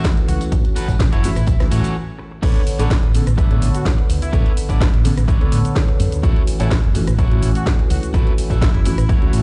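A filtered disco house groove opens with a dry, punchy electronic kick up front, a layered house kit with a cracking snare, hats, rim clicks, shaker and crash, and a very quiet tambourine that drops out at 1.9 seconds, all under a filter sweep that runs to a short break at 2.0 seconds. Beneath them, a round fingered electric bass and a dark, boxy concert grand piano with long sustain, phaser and vintage 12-bit sampler grit move from A6 to Bm9/A as the drop lands at 2.4 seconds. A twangy, slightly broken-up electric guitar riff sits in the mix, and a clear, vibrato-rich horn section plays a short melody in the background, pausing at 4.6 seconds before returning until the close. The bass, piano, guitar and horns all pump against the kick and sit behind a low-pass filter, and the horns also carry a digital delay. At 126 BPM in straight 4/4, the feel is joyful and feel-good, played on a big sound system in a bare room with large studio reverb and a dulled top end, and it is cut from a longer piece.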